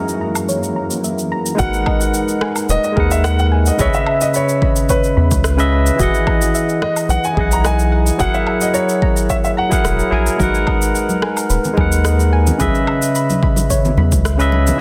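A straight 4/4 groove at 109 BPM is set from 0.1 seconds by layered electronic shaker, woodblock and rim click, joined at 1.6 seconds by a punchy, produced kick drum and a round, deep analog bass that sits up front with a dark, nasal edge. This excerpt of sunset chillout in G# minor feels warm and wistful, moving through G#m7, C#m7, Emaj9 and F#7 chords. It opens with a shimmering, ethereal ambient pad under a filter sweep, which drops out at 1.6 seconds, while a soft, gentle pluck with chorus and tape echo keeps up background arpeggios that also open with a filter sweep. A barky, clean tine electric piano carries the accompaniment through a combo amp, and an intimate grand piano with audible action noise plays the melody through tape echo until 10.1 seconds. Ringing, medium-tuned congas played with soft hands enter in the background at 10.4 seconds, all within a dense, heavily limited modern master with light reverb and digital ambience.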